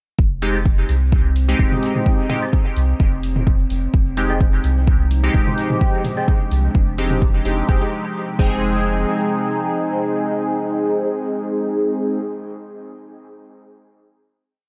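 Dub techno at 128 BPM in F dorian, cavernous and deep, built on a single Fm7 chord with a light swing on the sixteenths. A deep, tape-warm four-on-the-floor kick sits up front with a soft, round sub bass, open hi-hats and echoing claves and low toms. Juicy, detuned chord stabs with a resonant filter sweep ring out through dub echo and phaser. An eerie, metallic FM drone holds a high note in the background, and the bass, stabs, drone and percussion all pump against the kick. From about 4.3 s lo-fi keys join, followed by a warbling, nostalgic pad at 4.6 s, and the groove gives way at 7.7 s to a final held chord in a dark production.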